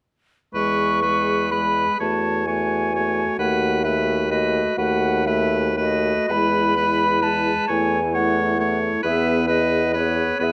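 In a rubato 6/8 at 37-45 BPM counted in dotted quarters, this tender classical excerpt for wind quintet in E major sets an airy, metallic silver flute with vibrato, tongued and distant, on the melody over a bright oboe second line with light vibrato sitting up front, a mellow, smooth-topped clarinet in the background, a warm French horn and an up-front bassoon bass with light vibrato, the five parts sounding together from 0.5 s to 10.5 s under light reverb and close, detailed microphones as the harmony moves from E through F#m7/E and B7/D# back to E, then A/E and again to E.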